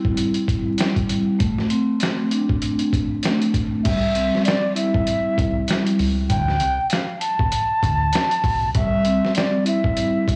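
A pure, mellow concert flute carries the melody from 3.8 seconds, its vibrato set against a ringing, metallic vibraphone that plays close and dry from the start in this moody, dark boom-bap hip-hop cut at 98 BPM with a swung 16th feel. A gritty, compressed, pitched-down sampler-style kit with a thumpy kick and medium-tuned snare opens on a break, and a round, punchy dub electric bass joins at 3.9 seconds. The whole mix sounds blown-out and overdriven, dusted with vinyl crackle and small-room ambience.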